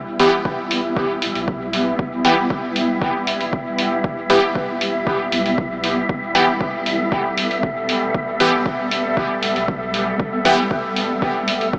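Heard through an AM radio filter and bathed in a huge ambient reverb, this excerpt of dub techno drifts in a nocturnal, meditative mood at 117 BPM in 4/4 with a straight feel, resting on a single E minor chord tuned to A4 = 444 Hz. Up front, a granular cloud pad holds blurred, full-bodied, evolving chords from the very start, breathing with sidechain pumping and its own reverb, while an airy, wind-like tuned noise texture hovers on a dark high E. Underneath, a round sine sub bass sits deep in the background, pumping along with the pad. At 0.2 seconds a juicy, detuned sawtooth polysynth arrives with resonant filter sweeps, chorus, phaser and dub echo, joined by a very quiet, nasal chord stab riff whose muted filter plucks carry a moving notch and phaser. The drums complete the picture: a muffled, pitched-down hi-hat that sounds re-recorded in a large room, and a punchy, layered kick up front from 0.5 seconds, carrying the air of a small room.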